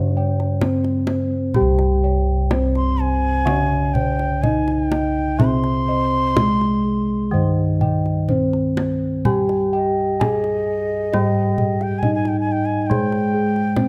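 This stately, shimmering Javanese gamelan excerpt in C pelog moves at 63 BPM in 4/4 with uneven beats. A mellow, full bronze metallophone carries the melody struck with padded disc mallets, over a softer, vintage-sounding metallophone accompaniment, a bright horn-mallet metallophone and background bossed gongs tracing arpeggios, and dark, round bossed gongs holding the bass. Tight, hard-handed kendang enters at 0.4 seconds, and an airy, reedy bansuri adds a straight-toned second line from 2.8 seconds, all in a close, detailed recording with light reverb.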